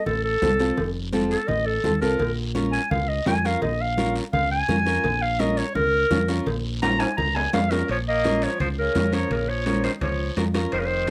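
A home cassette recording with moderate studio reverb carries this danceable, passionate cumbia at 169 BPM in Bb harmonic minor, where a distant, roomy, tape-coloured clarinet leads in classical style over full-bodied, fingerpicked nylon-string guitar with audible finger squeak, a dark, round, punchy fingered electric bass up front, thin-skinned congas and ringing, vintage, band-limited cowbell and timbales in the background, and a raspy, dry guiro, moving from F to Bbm until a drum fill at 6.8 s ushers in a bright, vibrato-laden pop-style tenor saxophone at 7.9 s.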